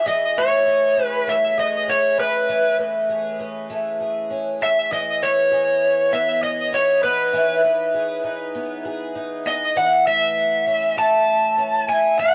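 Dream pop in a dreamy, blissful mood, this short cut from a longer piece pairs an up-front, overdriven electric slide guitar carrying the melody through tape echo with a picked twelve-string acoustic guitar playing shimmering, boxy, octave-doubled arpeggios through lush chorus and tape echo, moving from Amaj7 to Emaj7 and back on a gritty cassette recording with light reverb and a dulled top end.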